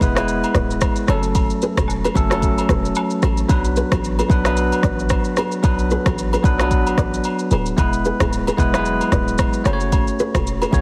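A bright, bell-like tine electric piano sits up front in this hypnotic, mellow afrobeats excerpt at 112 BPM in B dorian, joined by a punchy, tight 808-style bass, an electronic afro-pop kit with a deep kick, rim click and shaker, a fingerpicked nylon-string guitar riff with finger squeak and delay tucked in the background, and acoustic agogo bells and woodblock also in the background, all moving through E, F#m and Bm with a swung sixteenth feel, light reverb and a heavily compressed radio sound.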